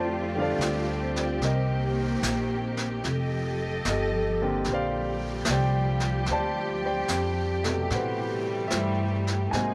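Swung eighths at a gentle 74 BPM in 4/4 carry this tender, late-night jazz ballad fragment in F major, where a clear concert grand piano and a lush, bowed string section with vibrato move through F69, Cm7, F13, Bb69 and Am9 over a woody, growly pizzicato upright bass sitting up front, while a quieter brush drum kit on snare and hi-hat joins at 0.6 s in a small, natural room touched with light reverb.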